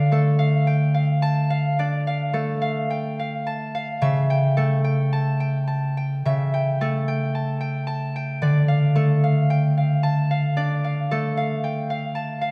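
A solo concert harp opens this short classical excerpt, its bright, ringing strings sounding up front in a gentle, wistful D minor. The tempo hovers around 53-58 BPM in 4/4, but the playing breathes with a rubato feel that keeps the pulse loose and expressive. Fingerpicked notes span from C#3 up to A5, moving from D minor to an A7 chord over C# at 4.0 seconds before settling back on D minor at 8.4 seconds. A generous scoring stage reverb surrounds the instrument, letting each plucked tone bloom into the space. Cut from a longer piece, the passage lasts 12.5 seconds and feels like a quiet, reflective moment caught mid-thought.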